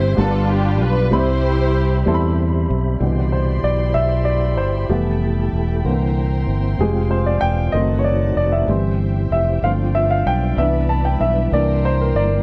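A warm, intimate baby grand piano, its action noise audible, takes a solo from 3.0 s in this uplifting, hopeful gospel excerpt in 6/8, over a round, punchy fingered electric bass, a mellow, flute-like tonewheel organ holding chords through a fast rotary speaker with chorus vibrato, and a dark, woody bowed string section that carries the opening melody with tape echo until 2.4 s before a second, softer-attacked string section sustains chords underneath, all in a dry studio sound.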